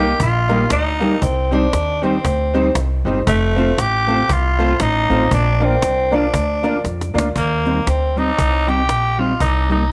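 Bouncy, upbeat ska with a lightly swung feel, cut from a longer piece, led by a raspy, gritty tenor saxophone melody with scooped notes that sits up front yet sounds roomy. Underneath, a woody, thumpy pizzicato upright bass on gut strings, a mellow, clean electric guitar with ensemble chorus, a snappy, hard-handed cajon and natural-sounding upright piano stabs fill out the groove, set in a moderate spring reverb. A cajon fill at 6.8 s leads into a new section at 7.4 s, just after the piano stabs drop out at 7.3 s.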